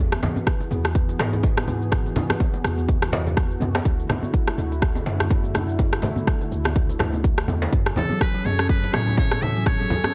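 Spiritual and earthy, this 124 BPM afro house excerpt swings over a punchy, up-front electronic kick, layered rim click and cabasa, soft-handed congas and a deep djembe in the background, a boomy 808-style bass and a detuned sawtooth pad pumping with chorus through E, Dadd9 and F#madd9, before a woody kalimba arpeggio arrives at 7.7 seconds and a buzzy, close-miked muted trumpet with vibrato and tape echo takes the melody at 8.0 seconds, all in a dry, gritty small-room sound.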